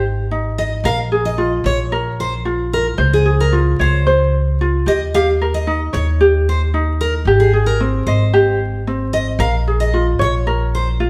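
Pop in Ab major at 112 BPM in a straight 4/4, this carefree, heartfelt clip is cut from a longer piece and runs about 11 seconds. A mellow, fingerpicked ukulele sits up front with a light accompaniment, while a pizzicato upright bass, woody with a bright steel-string edge, holds down the low end at the same level. Behind them, a full-bodied jumbo acoustic guitar with fresh strings plays picked arpeggios high in its range, sitting a little lower in the mix and dropping out at 10.9 seconds. The harmony moves through Abmaj7, Bbm7, Dbmaj7 and Eb7 before circling back to Abmaj7 and Bbm7. The trio sounds like a band playing live in one room, wrapped in a moderate large-studio reverb with vinyl crackle over the top.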